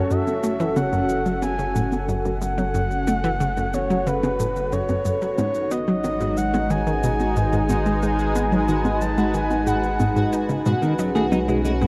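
A breathy, flute-like synth lead carries the melody in this hypnotic, expansive stretch of sequencer-driven space music at 91 BPM in 4/4, sitting up front with vibrato, chorus and analog delay over a sweeping, resonant pad that evolves slowly through F#m and G#m before settling on Bsus2. Beneath them, a bright, detuned analog pluck riff with a fast attack and short decay carries tape-worn character and its own delay, while a deep, round analog bass holds the low end. Electronic shaker and congas, overdriven and echoing through analog delay, join almost at once, and a pulsing, tempo-synced gated texture drifts in the background from 1.3 seconds. The lead falls away at 10.3 seconds, and a dark, clean semi-hollow electric guitar enters with fingered arpeggios at 10.7 seconds, treated with analog delay. The whole mix sits in a huge, wet ambient reverb with an 8.1-second decay and the warbling pitch drift of old cassette tape, and the passage is cut from a longer piece.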